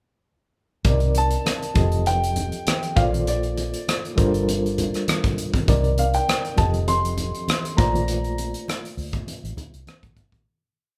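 A smooth mid-tempo soul groove at 100 BPM in 4/4, with a light swing on the sixteenths, is carried by an up-front studio drum kit of hi-hat, rim click and a punchy kick. Underneath it, a dark, foam-muted fingered bass plays a round, melodic line. In the background, congas with thick skins and soft hands add a slap on two and open tones on four. A reedy, barky electric piano, lightly overdriven and pulsing with fast tremolo through its built-in speakers, holds spread chords that move through Cm9, F7, Bbmaj7 and Gm11. From 1.2 seconds to 8.6 seconds, a warm grand piano with long sustain sings the melody in motif-based call phrases between D5 and C6. The band plays live together in a large studio with moderate reverb, giving this short, complete piece a lush, silky 1970s-style feel as it fades out from 8.1 seconds.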